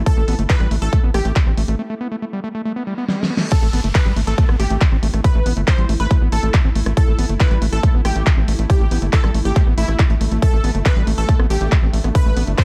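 At 139 BPM in a straight 4/4, this intense, driving psychedelic trance excerpt pairs a punchy, up-front electronic kick and a big-room drum kit with a huge snare against a tight, saturated sequencer bass, a squelchy, distorted acid bass riff with tape echo, bright detuned supersaw stabs through a phaser, and a swarming, granular drone in the background. A break begins at 1.8 seconds, a reverse cymbal and downlifter enter at 2.9 seconds, and a drum fill lands the drop at 3.5 seconds in a dark, warm mix.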